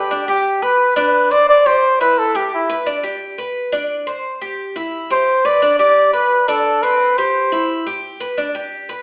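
A straight 4/4 Latin groove at 174 BPM in G major drives this sunny fragment, where a Cuban tres picks acoustic, metallic arpeggios on double strings, some octave-doubled, throughout, beneath an up-front bucket-muted trumpet whose veiled, mellow jazz solo with vibrato and soft attack arrives in two phrases starting at 0.0 and 5.1 seconds over alternating G and C chords, all set in a wet large-studio reverb with the live feel of a band in one room and a small-speaker sound.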